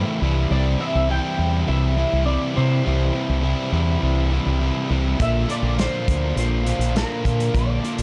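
Indie rock with a moody, bittersweet cast, cut from a longer piece, where a slightly broken-up lead guitar through a small old amp carries the melody with analog chorus and plate reverb over two crunchy, overdriven picked guitars playing the riff, one of them coated in lush chorus. A growling, punchy fingered bass sits up front with its own overdrive, and a loose acoustic kit with a tight kick and rolled-off top joins at 5.2 seconds as the harmony moves from C to Bb. The production is dark, with light reverb and a small-room feel on the drums.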